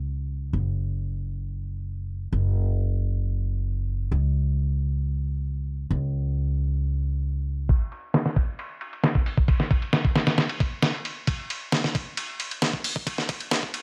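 Breakbeat fragment at 134 BPM in a straight 4/4 with a swaggering, raw mood, opening with a woody, up-front pizzicato upright bass on steel strings playing alone until 7.7 seconds, when it gives way to a gritty, compressed, sampler-style drum kit with a thumpy kick, fat snare, hi-hat and ride cymbal, all low-pass filtered and swept through a build-up to the end at 13.8 seconds in a dry mix.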